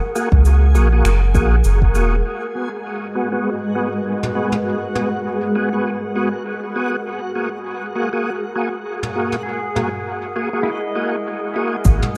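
A dark, warm production with light small-room ambience opens this meditative, spacious ambient dub excerpt at 100 BPM, swung on the sixteenths, as a cloudy, granular pad holds sustained chords from F#add9 to G#m7 while a reversed, dreamy swelling texture shimmers in the background. Up front, a thick, lightly overdriven tonewheel organ with key click and slow rotary speaker plays stabs soaked in dub echo, joined at the start by a deep, round sub bass and an overdriven electronic kick that both drop out by 2.2 seconds. Brushed jazz drums with cabasa, finger snaps and toms echo through the opening, fall silent after about five seconds and return at 9 seconds, and at 9.4 seconds a clean pedal steel guitar enters with slide arpeggios and volume swells.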